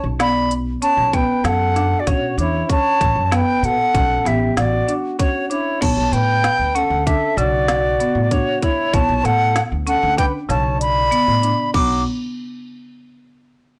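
Tense and driving, this progressive instrumental piece in an uneven 5/4 meter is cut from a longer work and rests on a Bm9 chord for nearly its full length. A bright, reedy wooden flute carries the melody from 0.2 seconds, sitting forward in the mix with a crisp attack, vibrato and plate reverb. Beneath it, a marimba with medium hard mallets plays percussive arpeggios on padauk bars in a boxy small room, while a distant, mellow flugelhorn adds a second line with light vibrato in a classical style. A pizzicato upright bass with steel strings sits up front with a woody tone, and an organic electronic drum kit keeps time with a tight kick, woody snare, smooth hi-hat and crash cymbal. The kick and snare drop out at 10.8 seconds, and the recording as a whole has a blown-out, overdriven sound in a moderate studio reverb.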